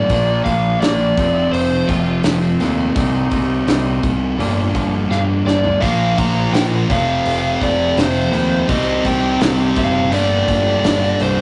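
A rough rehearsal-room recording with tube saturation, a dulled top end and a short small-room reverb frames this brooding, cathartic stretch of quiet-loud alternative rock at 84 BPM in 4/4, tuned a little below standard pitch. A biting, overdriven lead guitar solos throughout over a dark, up-front fuzz riff, a growling overdriven picked bass and a loose indie drum kit with a punchy kick, while a twangy, scooped clean guitar with phaser plays arpeggios until 5.8 seconds, after a drum fill at 5.1 seconds. At 5.8 seconds, a bright, tight distorted guitar riff joins in, as the chords move from Bb and F through Cm to Gm7, then cycle back through Bb, F and Cm to Gm.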